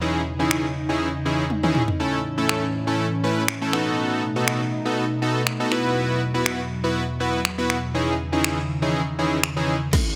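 A moderate, lush digital hall reverb frames this short, upbeat dance-pop excerpt, cut from a longer piece and moving at 121 BPM in a straight 4/4 with a summery glow. A fat, detuned sawtooth polysynth carries the accompaniment, bright, bold and up front with a fast attack, while an airy, breathy pad with a noise layer and moving notch sustains mellow harmony beneath it, both parts treated with chorus, low-pass filtering and sidechain pumping. A deep house drum kit enters at 0.5 seconds, its layered electronic sound built on a deep kick, woody snare, finger snaps, toms and crash cymbal, with a fill around 1.5 seconds and another near the close. The harmony moves through C#madd9/E, A, B7 and Esus2 before returning to C#madd9/E. In the final moments a clean, direct-recorded electric guitar slips in at 9.9 seconds with a brief picked riff in the background, followed by a very quiet riser at 10.1 seconds.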